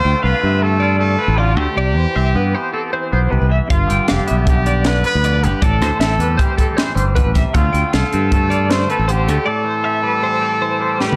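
A dark, warm production with light reverb carries this wistful, intricate math rock and midwest emo excerpt in 5/4 at 156 BPM in A minor, where a clear, distant trumpet with light vibrato and digital delay sings the melody over a twangy electric guitar with analog chorus, a bright twelve-string electric guitar picking tremolo-treated arpeggios, and a growly, up-front fingered bass that plays until 9.4 s, while a crisp fusion drum kit with a high-tuned snare and punchy kick enters at 3.7 s and closes with a fill at 11.0 s, moving through Dm7, Cmaj7, G7 and Am7.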